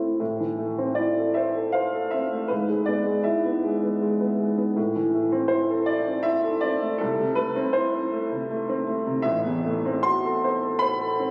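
Captured on a phone in the room, the recording carries a wet concert-hall reverb with a 1.8-second decay, a further layer of club reverb, and noticeable compression. The result is a reverberant sound around a single upright piano that still sits up front. This is a stormy, passionate romantic character piece for solo piano in A minor, moving at about 80 BPM in 3/4 with a freely pulled rubato feel, tuned slightly sharp at A4 = 443 Hz. The piano's tone is clear and woody, with an open ring and a slightly detuned edge, and it ranges from a deep A1 up to C6. Across roughly 11.3 seconds, cut from a longer work, the harmony moves from A minor through E over G-sharp, back to A minor and A minor over C, before closing on a half-diminished F-sharp chord over A.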